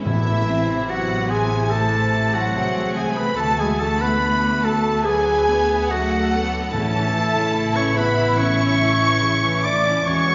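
A rich, vibrato-laden violin section carries the melody of this moving, uplifting cinematic excerpt in a free rubato 4/4, joined on the upper lines by a bright solo clarinet, a mellow, hollow flute and a second rich, vibrato-laden violin section. Beneath them sit a focused viola section, dark horns holding soft-edged sustained chords, ringing fingerpicked harp arpeggios, a clear double bass section and a lush, distant cello section, while very quiet hard-mallet timpani sound at 0.1 and 6.7 s, the whole ensemble heard in the reverberant bloom of a concert hall.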